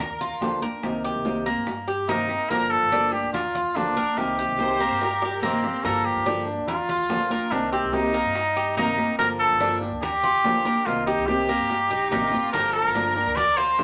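Latin Cuban son and guajira in G minor at 144 BPM, sultry and nostalgic, built on a bright, metallic tres picking arpeggios over fingerpicked flamenco guitar and a woody, thumpy pizzicato upright bass, with background percussion from ringing high-tuned congas, tight bongos, grainy maracas and barely audible claves. A punchy, vintage trumpet with light vibrato enters up front at 2.1 seconds to carry the melody, while a lush, smooth bowed violin section adds a second line in brief passages, returning at 11.9 seconds. The whole excerpt sits in moderate club reverb over a steady vamp between Gm7 and Cm7.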